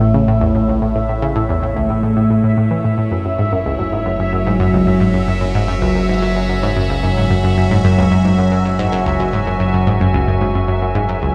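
A nasal, detuned analog pluck carries the riff up front in this luminous, expansive stretch of ambient, sequencer-driven space music at 111 BPM, its fast attack coloured by chorus, phaser and delay. Alongside it, an evolving wavetable pad morphs through sustained chords with phaser and its own reverb, moving from A to F#sus2 at 3.1 s, while a fat, thick analog bass with a filter sweep holds the low end. A bubbling, resonant texture of random filter steps hovers on a single high E with chorus, all set in a dark mix with a huge 8.0-second reverb.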